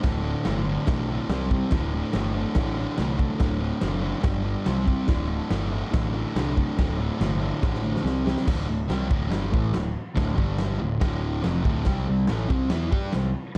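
A bright, double-tracked fuzz guitar sits up front, picking out a rowdy, swaggering garage rock riff over power chords on D, C and G, with a picked electric bass in punchy, overdriven fuzz underneath. A raw acoustic drum kit with a fat snare, punchy kick and crash cymbal sounds gritty and dark with a rolled-off top, and a drum fill at 7.6 seconds leads into the second section at 8.5 seconds. Light reverb gives the whole piece a small-room feel, and this cut from a longer track runs to about 13.6 seconds.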